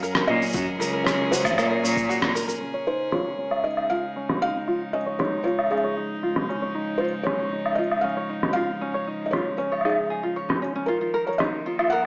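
A straight 4/4 pulse at 116 BPM drives this pastoral, playful folktronica excerpt in Db major, set by muffled, sampler-style electronic cabasa, rim click and woodblock placed up front, with a deep, tape-toned electronic kick sitting in the background. A felt-muted upright piano carries the melody, its dark, intimate tone thick with felt and audible action noise, trailed by tape echo. Light, fingerpicked tenor ukulele arpeggios run throughout, and from 2.6 seconds a filter sweep colors them. A string quartet holds soft-attack, floating chords beneath, while a bright, biting bowed cello plays an intense bass line with vibrato until 2.3 seconds, just after a band accent at 2.2. The harmony moves from Gbadd9 to Dbadd9 and settles on Ebsus2, all heard through light reverb and small-room ambience with a small-speaker character.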